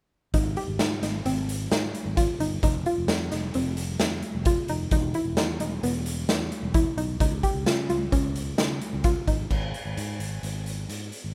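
A gritty, up-front garage drum kit with a punchy kick and a pumping room sound drives this bright, intricate progressive instrumental in 5/4, cut from a longer piece, as a growly, sustaining fretless electric bass plays beneath and a soft, round, chorused pluck arpeggiates through Abmaj7, F5, E5 and Dbadd9 until 9.4 seconds, after which bass and drums carry a brief unaccompanied passage in this dry, rough home demo mix.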